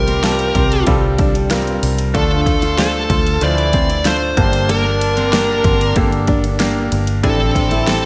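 A dark, distorted high-gain lead guitar carries the melody up front in this uplifting piano-driven pop excerpt, over a brilliant, woody upright piano, a round, foam-muted fingered electric bass and an overdriven deep house kit with a punchy kick and fat snare, while a fingerpicked steel-string acoustic guitar riff and a nasal, stopped French horn section sit in the background, all within a lush hall reverb that gives a big arena sound as the chords move from Csus4 through Dm and Gmadd9 to Am7.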